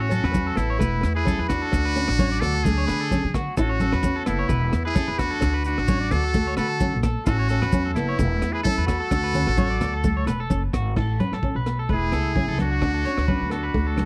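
A muted trumpet, buzzy and thin with light vibrato and a touch of tape echo, carries the melody over a joyful, sunny highlife guitar-band groove at 130 BPM in A major, cycling through A, Esus4 and D, while a breathy alto saxophone with scooped notes plays a second line beneath it. A twangy, slightly broken-up electric guitar picks echoing arpeggios, a fingerpicked flamenco guitar sits in the background, and a woody, thumpy pizzicato upright bass anchors the low end. From 0.1 seconds a saturated, gritty breakbeat kit with a punchy kick and dark cymbals enters together with thick-skinned congas and grainy maracas, the maracas dropping out at 10.9 seconds, all in a dry, close 1970s-style studio sound.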